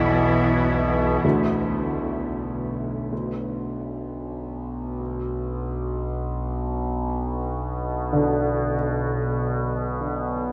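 This dark ambient drone fragment in B minor opens in free time with a lush, bowed cello section holding vibrato-rich sustained chords up front, which stop at 1.2 s, while a dark, boxy baby grand piano plays low arpeggios through delay, its action noise audible. Alongside them a resonant sawtooth-and-sine drone with moving overtones, chorus and its own reverb sustains throughout and fades in from 1.2 s, as a very quiet quartz singing bowl rings with pure, slowly beating tones from a wooden striker. A cathedral reverb and cassette-tape character steep the desolate, unsettling mood.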